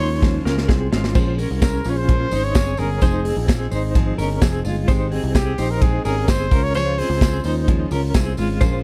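A close-miked, warm trumpet with vibrato and scooped notes carries the melody from the start over a fingerpicked steel-string acoustic guitar in the background, clean, compressed electric guitar arpeggios with tremolo and a dark, round picked bass, before a studio drum kit with a punchy kick enters with a fill at 0.2 s and a jingly tambourine joins at 1.1 s in this dry, nostalgic and youthful jangly indie pop excerpt at 129 BPM moving through Dbmaj7, Bbm9, Fm7 and Abmaj7.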